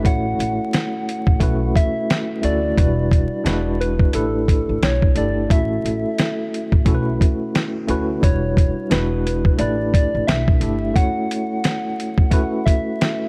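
A swung 88 BPM beat from a gritty, compressed sampler-style drum kit, with its thumpy kick and fat snare up front, drives this hazy, melancholic lo-fi hip hop passage in E dorian, where a worn, slightly out-of-tune tine electric piano with fast tremolo and a low-pass filter accompanies through a combo amp, a round, gentle FM synth lead with chorus and a low-pass filter carries the melody, and a woody, dark pizzicato upright bass plays until 10.9 seconds, all beneath vinyl crackle in a dry sound cut from a longer piece.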